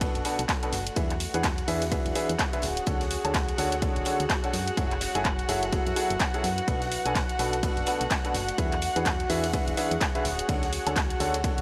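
A dry, gritty excerpt of bittersweet, energetic piano house at 126 BPM in B dorian, swung on the sixteenths, where a brilliant, woody upright piano riff with tape echo rides over a punchy, tube-saturated FM bass, a dark, softly bowed violin section holding sustained chords, a punchy analog kick, an up-front house kit of handclaps and bright hats, a very quiet big-room acoustic kit with a fat snare and ride, and a moody, detuned ambient pad that enters at 0.3 seconds, with the violins, piano and bass all pumping to the sidechain through a Bm7, E7, Dmaj7 and F#m9 progression.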